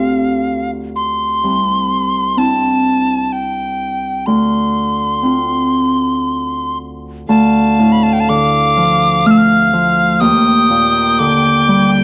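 A dark production with a faint mains hum sits in a moderate recital-hall reverb of 1.5 seconds, framing this short cut from a longer Celtic slow air. The mood is haunting and mournful, in D minor and 3/4, with a rubato feel at roughly 56-66 BPM. An airy metal tin whistle carries the melody, close-miked and up front, its crisp attack and chiff colored by vibrato. A mellow, ringing Celtic harp, fingerpicked and also up front, supplies the accompaniment from the opening. At 7.3 seconds a single bowed fiddle enters with a second line, clear yet nasal and earthy, with light vibrato, sitting lower in the mix. The harmony moves through chords such as Cadd9 and Dm7, settles on Dm, then turns to Ebmaj7 near the close.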